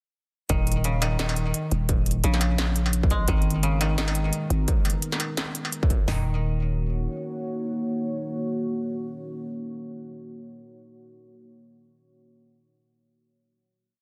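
Dark and spacious, this short half-time drum and bass piece opens at 0.5 seconds straight into a drop, where a bright, woody koto repeats a dry 16-step arpeggio sequence through digital delay while a growling, buzzy 808-style bass plays chopped phrases up front. Two electronic industrial drum kits drive the swung half-time groove, one with a distorted kick, floor tom, clanging snare and crisp hats, the other a sparse beat of low woodblock, closed hat, snare and struck metal. A deep, moody sawtooth pad enters at 3.7 seconds with chorus, built-in reverb and sidechain pumping. After the drums stop around 6.1 seconds, it carries the final Ebm7 chord with the koto and, briefly, the bass, all within a dense, heavily limited master with light reverb.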